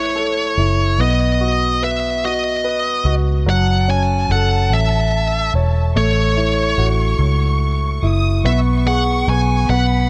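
Light reverb and a gentle studio ambience frame this tender, heartfelt six-eight pop ballad, heard here as a short cut from a longer piece. A high-gain lead guitar carries the melody up front, its distorted, picked tone trailed by delay and pitched in a singing upper register. Beneath it, a polished grand piano lays down present, warm accompaniment, while a vintage fingered electric bass sits prominently with a dark, round, punchy, foam-muted sound. At 3.5 seconds a distant studio violin section enters with a lush bowed second line high above, its soft attack, vibrato and portamento adding expressive sweetness. The harmony drifts from A and B through F#m7 and A6 to a rootless E69 over B.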